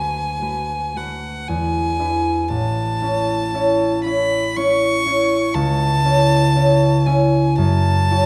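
In a flexible, rubato three-beat lilt, this lyrical romantic duo for violin and harp pairs a clear, focused bowed violin singing a high, vibrato-rich melody up close with the ringing, fingerpicked lines of a concert harp, both heard up front, all bathed in the lingering reverb of a recital hall within a dark, warm production.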